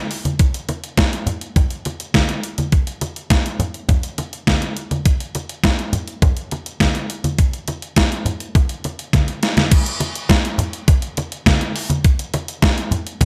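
Lightly reverberant digital ambience frames this slick, late-night funk excerpt in straight 4/4, where an up-front, detuned 8-bit drum machine with a thumpy kick, medium-tuned snare, hi-hat and crash rings through gated reverb as if re-recorded in a large room, while close, low-tuned acoustic congas with a thick skin sit beneath it, and a drum fill at 9.1 s leads into a new section at 9.7 s.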